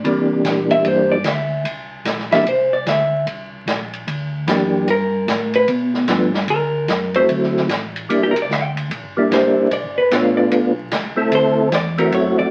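A greasy, soulful soul jazz organ trio swings at 149 BPM from the opening second, cut from a longer piece: a dark, picked hollow-body electric guitar takes an up-front, compressed solo over a percussive tonewheel organ melody with key click, chorus vibrato and slow rotary speaker, while a round, mellow organ carries the bass beneath them. A swinging big-band drum kit with a boomy kick, medium-tuned snare, hi-hat and ride sits back in a natural studio room and drops out at 12.2 s, as the harmony cycles through C9, G9 and D9. Moderate reverb and the crackle of a very old 78 rpm record give the whole track a dusty, period sheen.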